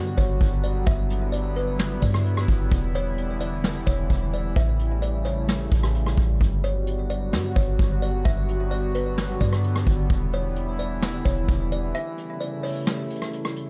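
A woody, plucked kalimba melody with delay, a warbling, detuned tape-like pad carrying chorus and reverb, and a soft, round 808-style bass open this dreamy, blissful cloud-rap excerpt at 130 BPM in a half-time feel, with an up-front vintage brush kit of punchy kick, rim click, snare and hi-hat arriving at 0.2 seconds over Gmaj7, Em7 and A7 chords in G lydian, before the bass stops at 11.9 seconds for a short break inside a dark, small-room production.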